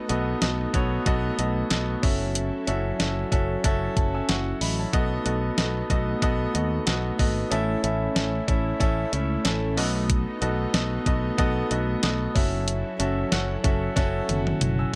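Set in a light reverb, this moody, nostalgic slice of 1980s-style pop moves at 93 BPM with a gentle sixteenth-note swing, its clean 12-bit drum machine sitting up front with a thumpy kick and fat snare across hi-hat and toms. A clear, intimate concert grand piano carries the accompaniment with audible action noise and long sustain, adding a fill at 3.6 seconds. A growly, punchy fingered electric bass anchors the B7 and F#m7 changes, while a lush, detuned unison pad with chorus holds sustained chords in the background throughout, and a drum fill arrives at 14.0 seconds.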